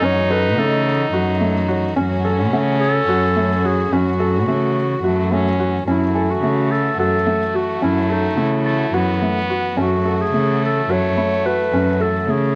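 Through light reverb and a cassette-tape hue, this pensive, hypnotic chamber fragment moves in 7/8 at 215 BPM (eighths) in F# dorian, opening on an F#m7 chord, with a mellow clarinet carrying the classical-style melody above a stopped French horn's nasal, metallic second line, while a felt-muted upright piano with audible action noise plays short-sustained arpeggios, a floating sul tasto cello holds the bass up front, a lush studio string section sustains chords in the background, and a very quiet, bell-like celesta adds delicate texture, the music shifting into a new section at 5.9 seconds.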